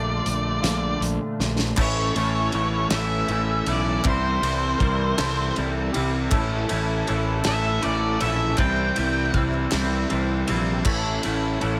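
A dark octave-fuzz lead guitar with slapback echo carries the melody from the first moment over a twangy clean guitar riff with ensemble chorus, a slightly broken-up guitar through a small old amp set in the background, and a punchy, up-front fuzz bass, before a loose, small-room indie drum kit with dark cymbals enters at 0.3 seconds, and at 1.8 seconds a very quiet tonewheel organ with key click and slow rotary speaker, crisp group handclaps and the move from Bbmaj7 to an A–C chord cycle lift this restless, bittersweet 6/8 indie rock excerpt at 53 BPM, with a bright tine electric piano slipping in briefly from 4.8 seconds in light reverb.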